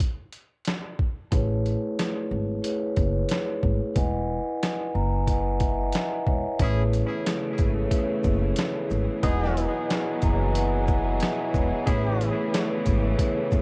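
A hazy, cassette-tape sound fills a small room in this soulful, confident boom-bap hip-hop passage, cut from a longer piece and moving at 91 BPM with a swung 16th-note feel in A lydian. A gritty, pitched-down sampler-style drum kit opens alone for the first 1.3 seconds, its thumpy kick, medium-tuned snare, hi-hat and shaker sitting up front with a compressed, large-room character. Pizzicato upright bass, woody and dark, then arrives alongside a mellow, ringing vibraphone played with soft mallets, close and dry, filtered and tape-softened as it moves between Amaj9 and Emaj9. At 6.6 seconds a lush studio string section adds smooth, bowed sustained chords with vibrato beneath the groove. A punchy horn section with light vibrato enters at the same moment, dropping in pop-style stabs coloured by tape echo until 12.3 seconds.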